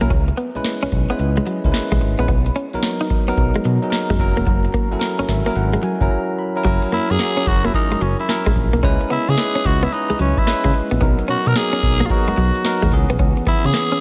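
Swung sixteenths at 110 BPM drive this confident, punchy new jack swing excerpt, where a booming analog drum machine with deep kick, crisp snare and metallic hats sits up front beside a smooth, nasal synth bass, while a bell-like tine electric piano with slapback echo comps and plays a fill from 5.0 to 6.6 s around a brief break, a clean, direct-recorded electric guitar picks a compressed riff through analog chorus, and a raspy, gritty tenor saxophone with vibrato and slapback echo takes the melody from 6.9 s over C#m7 and Bmaj7 chords in light reverb.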